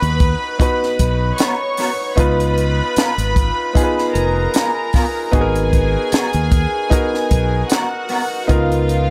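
A tight, dry funk drum kit sets a slow 76 BPM groove in 4/4 with a gentle sixteenth-note swing, its high-tuned snare, tight kick and hi-hat sitting up front. This short cut from a longer piece of lush 1970s-style soul in G# dorian feels cinematic and bittersweet, moving through G#m7, C#13 and G#m9 harmonies. A round, punchy fingered electric bass anchors the low end, while a clear grand piano plays intimate, polished accompaniment with audible action noise and long sustain. A studio string section floats above as a second line, bowed sul tasto with a soft attack and a pure, warm tone. From 1.4 to 8.2 seconds, a dark, slightly broken-up electric guitar through a small old amp adds a picked riff coloured by ensemble chorus, all set in a small room ambience.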